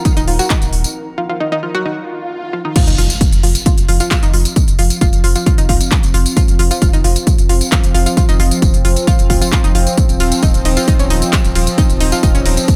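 A dry mix carries this fragment of hypnotic, dark peak-time techno at 133 BPM. A blurred granular cloud pad hangs in the background only until 1.0 s over a warbling, chorused analog drone, joined by a bright sawtooth-and-square pluck riff with dub echo, a heavy, tape-warm layered kick up front, a tape-warm small-room drum kit of smooth hats, ride, crash, handclaps and tambourine, and a round sine sub bass with tube saturation, with every musical part but the kick pumping to the sidechain, while a background swell and impact arrive at 2.0 s to mark the drop at 2.8 s, where the harmony moves from Ebm to F5.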